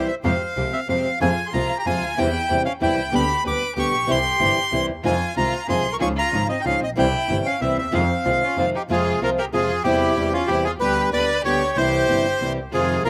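In a rubato 3/4 at 188 BPM, this tense, dramatic tango in F minor sets a reedy, up-front bandoneon melody with slapback echo over a distant, expressive violin second line, bowed with vibrato and portamento and carrying the same echo, alongside bright, fingerpicked nylon-string guitar with fresh strings, a focused bowed double bass, and very quiet, dark sul tasto chamber string stabs that drop out at 8.7 seconds and return at 12.7 seconds, in a dry outdoor setting.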